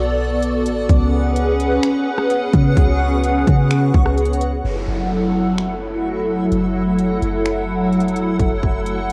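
Cloaked in light digital ambience with a homemade cassette-tape haze, this ethereal, melancholic cut from a longer atmospheric cloud-rap piece drifts in a half-time feel, where a hollow, flute-like pad warbles through chorused, sidechain-pumped chords over a round, deep 808-style bass, a reversed granular texture swells brightly in its own reverb, a tape-saturated trap kit of hard-clipped kick, crisp hats, finger snaps and rim clicks enters at 0.4 s, and a faint electronic downlifter sweeps in at 4.6 s as the harmony settles onto F#m7.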